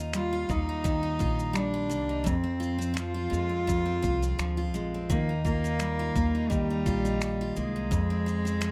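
Acoustic pop with a carefree, heartfelt mood and a lightly swung feel, built on a full-bodied picked steel-string guitar with audible finger squeak, woody pizzicato upright bass and a gritty, compressed sampler-style kit of finger snaps, thumpy kick and shaker, while a bowed cello carries a floating, pure melody played sul tasto with a soft attack from 0.2 seconds over Ebadd9 and Fm, all captured with close, detailed microphones and little reverb in this short excerpt.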